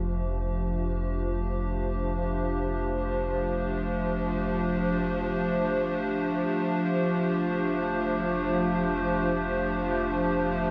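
Ambient piece in free time and F major, cut from a longer work, with a warm, peaceful mood and a nostalgic glow from worn, warbling cassette tape that drifts in pitch. A mellow, detuned tape-like pad sits up front holding sustained chords on an F6 harmony, fading in across the full 10.7 seconds with chorus and its own reverb. Beneath it, a round, deep analog bass holds a low F while fading out, and a nasal, string-like, bowed-like drone with vibrato and a noise layer sustains on F3, all bathed in a huge, wet reverb.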